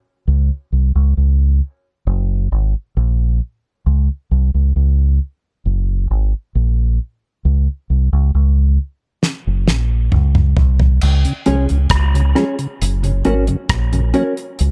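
Spacious and hazy, this dark, close-sounding dub reggae fragment opens with a round, up-front fingered electric bass holding a break alone until a damped 70s drum kit with a fat snare and tight kick enters on a fill at 9.2 seconds. From 11.2 seconds a mellow tonewheel organ with key click and slow rotary speaker comes in, followed at 11.5 seconds by a clean, compressed electric guitar softened by a low-pass filter and trailed by dub echo.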